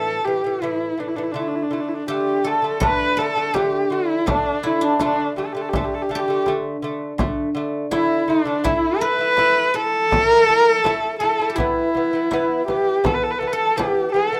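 This Mongolian folk excerpt at 82 BPM opens with a husky, focused horsehead fiddle carrying the melody up front, with vibrato and portamento, over delicate fingerpicked arpeggios from a bright double-strung lute, the harmony moving through A5, D5 and E5 in D zhi mode. A silvery, ringing guzheng adds a second line from 2.1 seconds, and a deep frame drum struck with hard hands enters at 2.8 seconds, giving the vast, galloping 4/4 its pulse. The drum sits close and dry while the rest sounds in a small, reverberant room, with the rough feel of a home demo.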